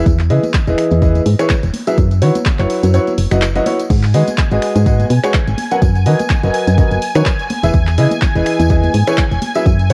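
Uplifting, euphoric piano house at 125 BPM with a light 16th-note swing, cut from a longer piece, where a clear, boxy baby grand piano riff and a round, dark FM bass pump up front against an overdriven, punchy electronic kick that drops out from 2.9 to 3.9 seconds, joined by a dry analog drum machine with crash, finger snaps, handclaps and hi-hat, tambourine and congas in the background, and a silky, bright analog string pad with ensemble chorus that enters at 3.9 seconds, all carrying a cassette home-recording feel with little reverb over chords moving from Emaj7 through F#7sus4, G#m7 and Bmaj7/F#.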